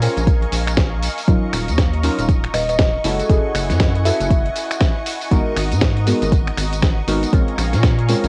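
A deep, up-front electronic kick drives this smooth deep house excerpt at 119 BPM in Eb minor, with 60% swing on the 16ths, alongside a rubbery, nasal square bass and a gritty, compressed sampler-style kit of finger snaps, hi-hat, snare and tambourine. Soft, dark chord stabs colored by chorus, phaser and tape echo pump with the bass and a detuned analog pad through Bbm9, Ebm9, Gbm9 and Abm9, while a shimmering vintage string-machine violin layer sits in the background. A woody kalimba with analog delay adds a brief melody from 2.5 to 4.2 s, all within a dry, intimate home cassette recording.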